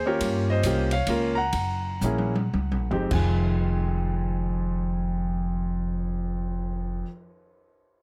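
A warm, deep-voiced grand piano carries the melody up front in this brief, moody jazz trio fragment in a swinging 3/4, joined by a woody pizzicato upright bass and an airy small-room drum kit with dark cymbals, a boomy kick, hi-hat, ride, toms, crash and a cymbal swell. The opening passage slows as it moves from Gm7b5 to Gb, with a drum fill from 2.0 to 3.1 seconds leading into a second passage that settles on Fm7. Light reverb and close, detailed miking give the polished recording a natural sound.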